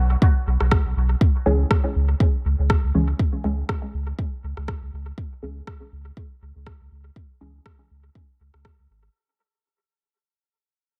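A swung 121 BPM groove drives this deep, nocturnal dub techno excerpt, where a round sine sub bass pumps beneath an up-front layered kick and a rim click trailing dub echo, while a muted, detuned sawtooth chord stab with phaser and a filter sweep enters at 1.5 seconds to outline C#m in an echo-heavy digital space as the whole fades out.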